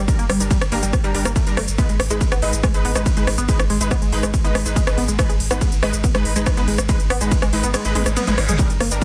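Driving peak-time techno at 141 BPM in a straight 4/4, this short cut from a longer piece has a dark, hypnotic mood built over chords moving from G minor to A-flat minor. A tight, detuned sawtooth synth riff with a filter-plucked, mellow edge runs through chorus, phaser and delay, pumping against the kick alongside a deep, thick sub bass given tube saturation and a low-pass filter. Aggressive unison rave stabs, detuned and decaying, ride above with chorus, their own reverb and delay, while a heavy, overdriven electronic kick anchors the groove. An up-front, overdriven techno kit adds smooth hi-hats, ride cymbal, rim clicks, shaker and toms, with the hats, percussion, cymbals and toms all pumping with the sidechain. The kick drops out at 7.7 seconds, a drum fill follows at 8.0 seconds, and a reverse cymbal sounds quietly in the background from 8.1 seconds, all within light reverb and a dense, heavily limited modern master.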